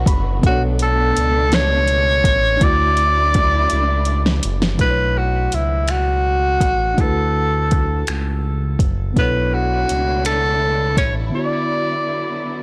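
A slow, straight six-eight groove at 55 BPM anchors this sensual, tender R&B excerpt, carried by an electronic drum kit of finger snaps, metallic hi-hat, soft kick and fat snare, re-recorded in a large room, with a drum fill at 3.7 seconds leading into the second section. Beneath it, a dark, detuned synth bass of sawtooth and triangle tones glides with portamento and vibrato, sitting up front with tube saturation until it drops out at 11.3 seconds to open a brief break. A reedy, worn electric piano, slightly out of tune and lightly overdriven as if through its built-in speakers, opens with a short fill and then accompanies in the background. A lush, bowed string section adds sustained, expressive chords from a distance, pausing in the middle and returning at 9.2 seconds. Up front, a tenor saxophone carries the jazz-style solo melody with scooped notes and light vibrato, its roomy tone trailed by digital delay, over Bm9, Dmaj9, Bm11 and D69 harmony in a blown-out, overdriven recording with little reverb.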